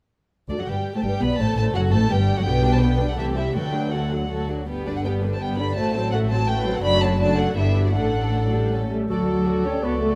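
Sul tasto violins with light vibrato carry a graceful melody in this spirited, quick classical-period orchestral passage in 3/4 at 153-171 BPM with a rubato feel, moving from G major to D major at 6.8 s, while a second violin line and a hollow, airy background flute weave alongside soft-edged violas, woody cellos and a pure, floating double bass anchor the bass, a dark, distant clarinet enters at 8.9 s, and a mellow cor anglais and very quiet French horns holding sustained chords join at 9.1 s, captured by close, detailed microphones with light reverb.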